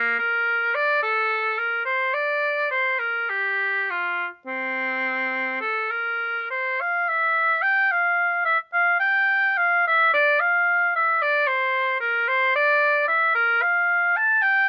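Close, detailed microphones and a light reverb place a lone oboe up front, its clear tone touched with vibrato and a vintage character. This is a short classical fragment, a baroque-style fantasia for unaccompanied oboe, cut from a longer piece. In triple metre with a rubato feel, the line is flowing and dance-like, ranging from Bb3 up to A5. The oboe plays solo for the full 14.7 seconds, and the music moves into a new section at 6.8 seconds.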